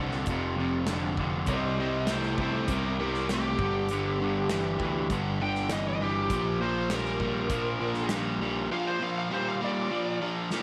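Polished and lightly roomy, this sunny, driving classic rock cut at 100 BPM in 4/4 rides on two bright, crunchy overdriven guitars playing a riff, one up front with spring reverb, over an amped, overdriven picked bass that drops out at 8.7 seconds and an airy, big-room acoustic drum kit with a medium-tuned snare, kick and hi-hat. A very quiet, full tonewheel organ holds sustained chords through a slow rotary speaker with chorus vibrato, while a warm, distorted, bluesy lead guitar takes a solo melody from 1.5 seconds as the harmony moves through Fadd9, C, G and Bb.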